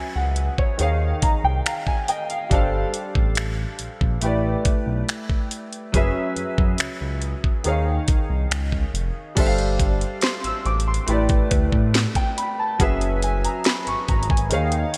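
Contemporary R&B at a slow 70 BPM in 4/4 with a straight feel, this short cut from a longer piece carries a longing, moody air over suspended ninth chords that drift from F#9sus4 through Eb9sus4, G9sus4 and A9sus4. A clear concert grand piano with a deep low end and an analog chorus sheen leads the accompaniment from the start, adding a fill between 0.8 and 2.5 seconds. Beneath it, a smooth, dark synth bass blends sawtooth and triangle tones with vibrato and portamento, gliding between sustained notes. A trap drum kit enters at 0.4 seconds, up front with a knocking kick, sharp snare, metallic hi-hats, finger snaps and crash cymbal, all roughened by vintage 12-bit sampler grit. At 10.2 seconds a very quiet, woody FM pluck with a round, mallet-like attack and a noise layer adds texture, set in light reverb within a bright 1980s-style digital production.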